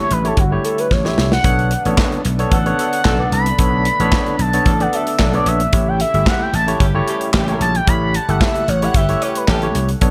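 An expressive, smooth synth lead with chorus and phaser takes the solo in this slick, late-night excerpt of early-eighties boogie funk at 112 BPM, moving over A7 and Bm9 chords. A growly, punchy slap bass and an up-front drum kit with gated reverb, tight kick, snare, hi-hat and handclaps drive the groove, with a drum fill at 0.9 s, while a barky tine electric piano through a combo amp and a very quiet, airy unison pad fill in the harmony. From 2.5 s, a mellow, distant horn section adds a second line in the background.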